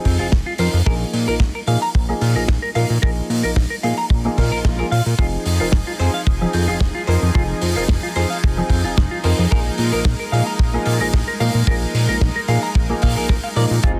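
A tight, dry kick up front and a damped 70s drum kit of hi-hat and medium-tuned snare set a sleek, groovy nu-disco pulse at 111 BPM with a light 16th-note swing, under a fat, detuned, saturated sawtooth bass, a clean picked electric guitar riff with chorus and delay, and a dark, mellow, worn baby grand piano filtered and echoed over Fm7 and Bb7sus4, until a very quiet electronic swell at 4.5 seconds ushers in a lush, warbling unison pad with vintage 12-bit grit and sidechain pumping from 5.2 seconds, all in a dense, heavily limited mix with light reverb.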